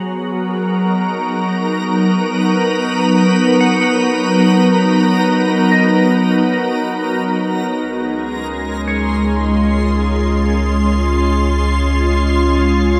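This ambient excerpt drifts in free time in Db major, calm and peaceful, with a dreamy sense of stillness. A soft, organ-like pad holds sustained chords from the start, pure and bright with a slow attack, long release and an ensemble chorus that gives it a gently detuned shimmer up front. Almost at once a reversed, granular texture swells in high in the background, its bright detuned tone sliding in on a slow attack. At 3.6 seconds a clean, picked electric guitar adds quiet arpeggios with a scooped tone, dressed in lush chorus and delay. The harmony moves from Cbmaj7 to Dbmaj7 at 7.8 seconds, where a round sine sub bass enters on a deep, sustained Db. The whole mix is soaked in a long hall reverb that blurs the parts into one hazy, glowing wash.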